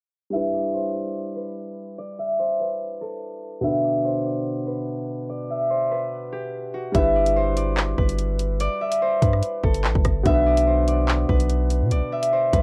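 A fingerpicked concert harp carries the melody in this menacing, tense drill excerpt, its acoustic, ringing tone sitting up front and coloured by cassette tape. Beneath it a dark concert grand piano adds accompaniment with a boxy, deep-bass character and long sustain, also with a cassette-tape tint, while the chords move between G6 and Bm. The opening stretch runs under a filter sweep until 6.9 seconds, when a long sustained 808-style bass and a drill drum kit enter together. The bass is deep and sine-like, with a fast attack that decays into a mellow tail, and the electronic kit brings a hard-clipped kick, warm hats, handclaps and rim clicks, both placed up front. At 145 BPM in 4/4 with a half-time feel, the track has a dry, lo-fi home-cassette sound with a low-pass filter and little reverb.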